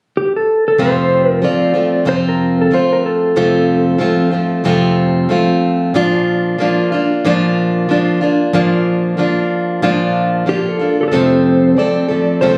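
A fingerpicked, plugged-in steel-string acoustic guitar sits up front with a warm, concert-ready tone, carrying the accompaniment from 0.8 seconds to the end of this short pop cut from a longer piece. Above it, a clean lap steel guitar plays the melody with a dark, compressed electric sound, its slide lines shaped by volume swells, appearing from 0.2 to 5.0 seconds and returning at 10.5 seconds. The mood is carefree and easy-going, with a gentle swing on the sixteenths giving the groove a relaxed lilt. The harmony moves from F to Bb and back to F. Recorded on a phone in the room, the sound carries a light club reverb that lends it an intimate, live-venue feel.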